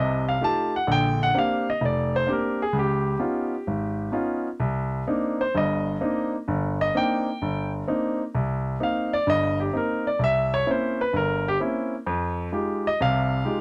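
Solo jazz with a smoky, cool swing in 4/4, this short fragment of a longer piece features a single warm, polished grand piano placed up front, moving through rich extended chords such as F9, Db9 and Cm9 before arriving at C7b9 and Fm9, all captured in a dry, close 1970s-style studio sound.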